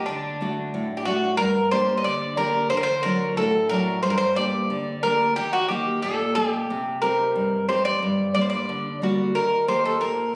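Greek folk music from a bouzouki band, moody and bittersweet, moving at 91 BPM in a straight 2/4. The Greek bouzouki carries the melody between D4 and Eb5, its picked double strings ringing metallic with some octave-doubled courses, set up front and bathed in plate reverb. Beneath it, a nylon-string guitar plays a fingerpicked accompaniment from G2 to G4, full-bodied and deep in the classical manner, also placed close. The harmony alternates between D and Gm before moving through Eb, Cm, Gm and Eb, with the passage shifting into a new section at 1.4 seconds. The sound has the intimacy of a phone recording in a small, reverberant room, polished with studio reverb and compression, and this brief fragment is cut from a longer piece.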